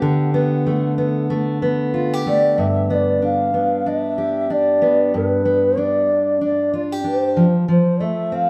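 A wet stone-room reverb surrounds this easy-going, carefree pop excerpt, played live by a small group sharing one room at 94 BPM with a gentle sixteenth-note swing in G mixolydian. A full-bodied, fingerpicked dreadnought steel-string acoustic guitar carries the accompaniment from the start, moving from Gadd9/D to G and finally F. At 2.3 seconds, a mellow bass bansuri enters with an airy, tongued bamboo melody coloured by vibrato.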